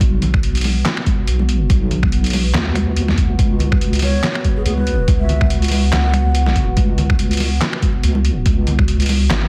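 A deep, soft wobble bass sits up front in this brooding, meditative deep dubstep excerpt at 142 BPM, its detuned, chorused tone rolling beneath a dark analog pad with a slow attack, long release and phaser shimmer, over chords moving from Bm to C#5. A muffled, pitched-down, overdriven kick and a trip hop sampler-style kit of finger snaps, handclaps, hi-hat and snare carry a swung half-time feel, while soft-handed congas sit in the background. From 4.0 to 6.5 seconds a breathy, hollow low ney enters with 12-bit sampler grit and dub echo, all within a dry, densely limited mix dusted with vinyl crackle.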